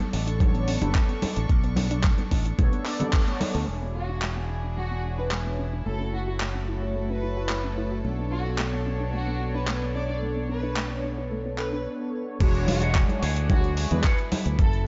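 A dark, lightly reverberant nu-disco excerpt with a sleek, cosmic mood, driven by a gritty, overdriven sampler-style drum kit of crash, hi-hat and handclaps, a thumpy kick up front, and a growly, bright fingered electric bass, with ringing congas in the background. Floating studio strings hold sustained chords and a detuned, chorused synth brass plays accompaniment, both pumping to the sidechain, while a very quiet, round pluck plays arpeggios and, from 4.0 s, a biting, distant chamber violin section carries the melody through digital delay. At the drop at 12.4 s a clean, twangy envelope-filtered electric guitar enters with a riff as the kick returns, and the congas follow shortly after.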